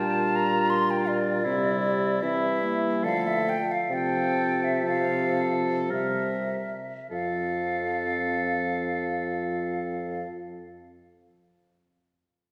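Serene and warm, this slow romantic classical movement for wind quintet in 3/4 unfolds with rubato and gradually slows from 0.3 to 7.1 seconds, as an airy, hollow concert flute with vibrato and a crisp attack carries the melody up front, a roomy oboe traces a second line, a dark, smooth-topped clarinet sits in the background beside a mellow, vintage-toned French horn in the accompaniment, and a close-miked bassoon with light vibrato supplies the bass, the whole ensemble bathed in wet concert-hall reverb before arriving on an F chord at 7.1 seconds.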